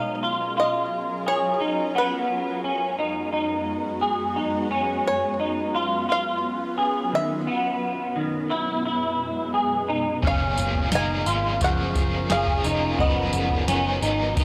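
A dry, gritty recording with light reverb and transformer saturation frames this dreamy, ethereal dream pop excerpt, where a bright, twangy banjo melody played with fingerpicks and tape echo floats over a shimmering, detuned ambient pad and clean, hollow-body electric guitar arpeggios up front, until at 10.2 seconds a soft vintage rhythm box with deep kick and tonal snare, a dark, round muted bass with tube saturation, a crunchy overdriven guitar with tremolo and lush chorus, and a mellow glockenspiel in the background join the blend.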